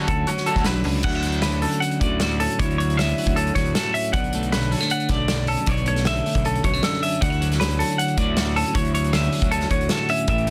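Wistful and intricate, this short math rock and midwest emo passage in D major moves at 156 BPM in a straight 4/4, with a bright, twangy twelve-string electric guitar chiming out a clean, picked accompaniment beneath hollow-body semi-hollow arpeggios, a bright overdriven garage guitar riff flickering in the background only until 0.9 seconds, a fuzz-drenched picked bass, and a roomy, dark-cymbaled indie drum kit sitting up front, all moving from Dmaj7 through Dmaj9 and Bm9 under light reverb and a dense, heavily limited master.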